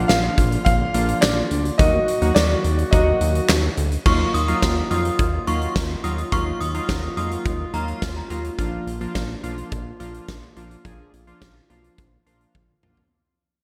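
Melancholic yet driving synth-pop excerpt with a bright 1980s-style digital sound: an up-front huge arena drum kit with a fat snare and punchy kick plays alongside a glossy, detuned synth bass, round chorused analog keys, and a close-miked woodwind section holding sustained chords in the background, while a clear concert grand piano carries the melody with digital delay until 3.7 s, an inharmonic FM synth chime with tremolo rings in from 4.1 s, and the music fades out from 4.1 s in a lush hall reverb, with a drum fill arriving at 12.5 s as it fades.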